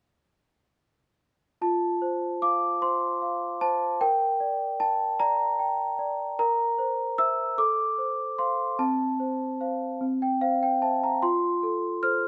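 Close, detailed microphones and a light reverb put the celesta up front in this short passage cut from a longer piece. It is a tender, innocent classical lullaby in a gentle, straight 6/8, with the large celesta playing alone from 1.6 s to 12.3 s across a range from C4 to F6. Its bell-like tone is sweet and ringing, with the crisp attack of hard felt hammers and a full, mid-forward body. The harmony moves from F through Gm/Bb and C7/Bb before settling through F/A, F/C and C, then returning home to F at 11.2 s. The result is a delicate, intimate miniature, like a music box heard up close.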